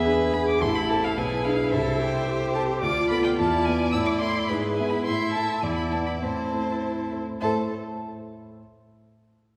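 A quick 2/4 pulse of 99-110 BPM, pushed and pulled with rubato, drives this urgent, stormy classical-period movement for piano quintet in A minor, cut from a longer piece. One violin carries a focused, bowed melody with vibrato high above a rich second violin and a cello set in the background. A viola adds expressive portamento with a soft attack, while a dark, mellow grand piano sits up front with deep bass. The harmony circles between A minor and E7. The strings stop at 7.7 seconds, leaving the piano alone until 8.6 seconds, and a wet scoring-stage reverb places the ensemble further back in the room.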